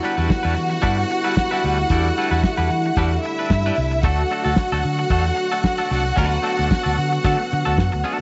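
A glamorous, sultry disco cut in E minor at 112 BPM opens with a damped 70s drum kit with a fat snare and tight kick, a lush, close string section carrying a vibrato-rich second line, a twangy clean electric guitar with tremolo, and dark French horns holding sustained chords over Em7 and D, while a punchy fingered electric bass enters at 0.2 seconds, all bathed in an echo chamber reverb with a rolled-off top.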